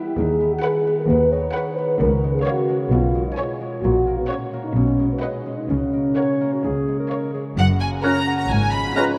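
A playful, mischievous cinematic cue in F# major at 130 BPM opens with dark, distant French horns holding sustained chords up front, a ringing fingerpicked concert harp spilling arpeggios, a lush violin section carrying the vibrato-rich melody over a softer background violin line, and a smooth, even viola section in accompaniment, with a focused cello section and distant symphonic double basses anchoring the bass from 0.2 seconds. A mellow clarinet adds a second line at 6.2 seconds, and at 8.0 seconds an airy, very quiet flute, a background oboe and a roomy, shadowy bassoon join for the closing phrase as the harmony lands on F# and then turns toward C#7. The whole cue sits in a vast, echoing cathedral reverb and is cut from a longer piece.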